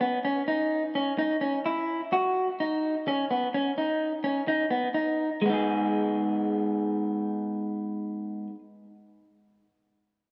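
Progressive instrumental in G# minor at 128 BPM in a straight 7/4, driving and tense, cut from a longer piece. A lone electric guitar through a small old amp carries it from 0.0 to 8.6 seconds, picked and compressed with a slightly broken-up, warm tone sitting up front, dressed in spring reverb and tape echo within a wet studio room. The chords move from C#m to a rootless Badd9 at 2.1 seconds, then settle on G#m as a second section begins at 5.4 seconds.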